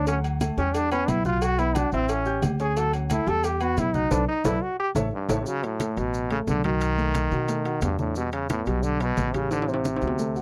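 This dry, close recording has a 1970s studio character with light reverb, capturing a sunny, lively stretch of Afro-Cuban jazz in straight 4/4, cut from a longer piece. A brilliant, forceful trombone carries the melody up front, and its punchy jazz-style solo, with scooped notes and light vibrato, runs from the start to 5.5 seconds. Beneath it, a woody, growly pizzicato upright bass on steel strings also sits up front. A dark, mellow baby grand piano adds intimate accompaniment, its action noise audible. In the background are low-tuned congas played with hard hands, ringing metal-shell agogo bells and timbales, and a tight, high-tuned cowbell that stops at 5.4 seconds, with grainy, compressed maracas adding texture. A band accent and drum fill close the first section and another fill arrives at 9.5 seconds, while the harmony moves through chords such as D, Em, A7 and Bm7, then B7 and Am7 in the second half.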